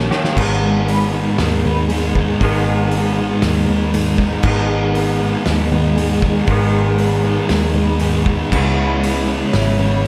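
A dreamy, reverb-soaked mix with a moderate plate and small room ambience wraps this hazy excerpt of shoegaze and dream pop rock, moving at 118 BPM in 4/4 with a straight feel in G# minor. A drum fill opens the first 0.4 seconds before the loose indie kit settles in at a distance, its dark cymbals, fat snare and tight kick sounding roomy until 9.7 seconds. Up front, an electric guitar through a small old amp plays a slightly broken-up, lo-fi, compressed riff colored by reverse reverb, while a thick fuzz guitar adds a dark, distorted riff thickened by lush chorus. In the background, a fingerpicked twelve-string acoustic guitar with old strings spins woody, boxy, shimmering octave-doubled arpeggios through analog chorus and delay. A vintage foam-muted electric bass anchors the low end with a round, amped tone as the harmony rests on G#m and shifts to C#m7 at 8.5 seconds.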